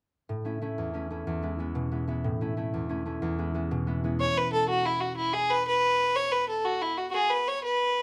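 A bowed fiddle with a reedy, gut-string tone and a smooth top carries the melody in this cheerful, bright Celtic folk piece, cut from a longer performance. It sits up front in the mid register, entering at 4.2 seconds and continuing to the end. Before that, a fingerpicked concert harp plays alone from 0.3 seconds, its ringing acoustic sound alternating between A and E chords in A major. The tune moves at 123 beats per minute in a straight 6/8, and once the fiddle arrives the chord changes stop, with the harp sounding on beneath until 7.1 seconds. A moderate small-room reverb gives both instruments a close, intimate setting.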